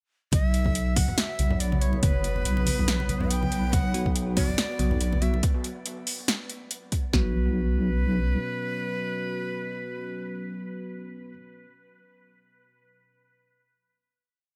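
A meditative, dark deep dubstep piece opens at 0.3 s with a breathy, bright shakuhachi playing call-like motifs through dub echo, over a half-time groove of overdriven electronic drums with a deep kick, punchy snare and metallic hats, low-tuned congas in the background, and a deep, soft wobble bass whose modulated phrases shift their wobble speed. A resonant, wave-folded drone with moving overtones and a wind-like noise layer hold sustained tones behind it in a digital ambience, and at 3.9 s a bell-like tine electric piano adds clean off-beat chord stabs in parallel shapes with dub echo. From 7.1 s the beat falls away, the wobble bass lingers until 8.4 s, and a final chord rings out on the drone, shakuhachi and electric piano.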